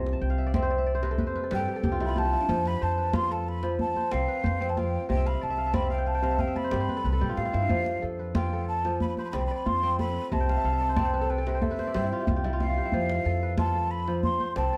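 A light reverb gives this cut from a longer West African string and xylophone piece a warm, joyful glow, moving at a straight 92 BPM in 4/4 in F lydian. Up front, a crisp, ringing fingerpicked kora plays arpeggios with recurring fills, over a woody, thumpy pizzicato upright bass and a deep djembe struck with hard hands in a live room. A breathy, hollow jazz flute with vibrato enters at 1.5 seconds and carries the melody as a solo through the first half, and a drum fill at 6.9 seconds leads into the second section.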